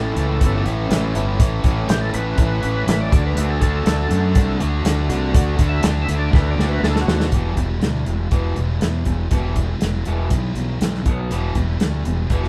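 Classic rock with a driving, sunny feel, cut from a longer piece, in which a gritty, thick overdriven tonewheel organ with key click and slow rotary speaker takes a solo over a barky, reedy electric piano and very quiet sustained chords from a second tonewheel organ, these three keyboards stopping at 7.3 seconds after a drum fill from 6.3 seconds, while a bright overdriven semi-hollow guitar in the background and a sludgy distorted guitar play riffs over a round, punchy fuzz bass and a dry, damped 70s drum kit with a tight kick up front, the band heard playing live together in one room with moderate studio reverb.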